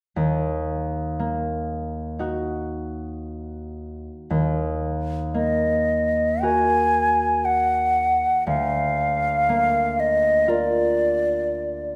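A recital hall's wet reverb, with a 1.4-second decay, surrounds this romantic classical duo for flute and harp, taken from a longer piece. The mood is elegiac and solemn, set in Eb minor at a slow 53-62 BPM in 4/4 with a rubato feel. The concert harp opens alone at 0.2 seconds, its fingerpicked, ringing acoustic tone sitting up front as accompaniment from D2 to Bb4. At 5.3 seconds the silver concert flute enters with the melody, its tongued notes pure and hollow with a mellow vibrato, ranging from D5 to Ab5 and also placed up front. The harmony rests on Eb minor before moving to Bb over D at 8.5 seconds.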